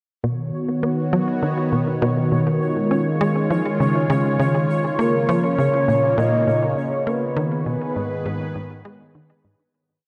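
Ambient, sequencer-driven space music in G# dorian, this brief whole piece moves at 101 BPM in a straight 4/4 with an expansive, mysterious mood. A sweeping, resonant pad holds sustained chords up front, its detuned sawtooth tone bright and full-bodied with chorus, moving from Badd9 through C#add9 and A#m to G#m. Beneath it a tight, punchy sequencer bass drives a repeating 7-step loop that drifts against the bar, its filter-plucked sawtooth bite decaying into tape echo. High above, a pulsing gated texture sits on a single held C#5, tempo-synced and soft, bathed in chorus and its own reverb. At 5.0 s a soft, octave-layered synth lead enters with round, sub-octave call phrases colored by tremolo, vibrato and tape echo, and a fade-out begins at 6.6 s. The dark production is steeped in a huge, wet reverb with an 8.6-second tail.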